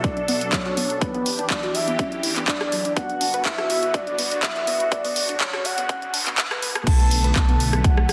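A soft, round octave-layered synth lead with chorus, tremolo and tape echo carries a bittersweet B minor melody over a mellow filtered supersaw swell, a punchy overdriven kick and a house kit of bright hats, handclaps, rim clicks and crash, joined at 0.2 seconds by a gentle decaying pluck arpeggio, as this expansive 123 BPM progressive house excerpt builds through a filter sweep over Bm7, Em7, Gmaj7 and Dmaj7 until a deep, rumbling detuned saw bass arrives with the drop at 6.9 seconds.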